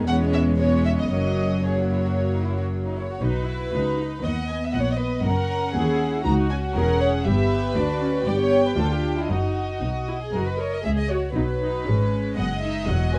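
A second violin line, rich up-front violas, smooth-topped chamber cellos and dark, woody, distant double basses with vibrato all enter at once to open this lively, spirited classical-period movement for string orchestra, bowed sul tasto, before the soft-attacked first violins float a pure, close melody above them from 0.1 seconds, all set in light reverb within a dark production.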